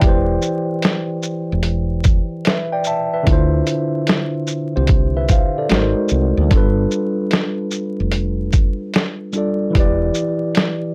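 Muffled, thumpy sampler-style drums with a compressed, pitched-down feel sit up front in this hazy, nostalgic lo-fi hip hop fragment at 74 BPM in D dorian, swinging beside a round, dark fretless electric bass with subtle chorus and a clean tine electric piano with cassette-tape color that moves through chords like Am11/E, Dm7 and G7, all set in a dry, gritty recording dusted with vinyl crackle.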